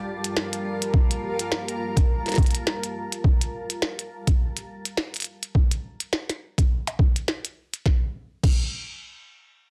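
A blurred, detuned granular cloud pad with built-in reverb and sidechain pumping holds a Gm9 chord from the start until 3.2 s, as an up-front glitchy drum kit of clicky hats, crash and a tiny soft-clipped snare joins at 0.2 s and an overdriven, thumpy, pitched-down electronic kick enters at 0.9 s, giving this gritty, playful glitch hop excerpt in G minor at 104 BPM a swung 16th-note feel, moderate studio reverb and a dense, heavily limited modern master.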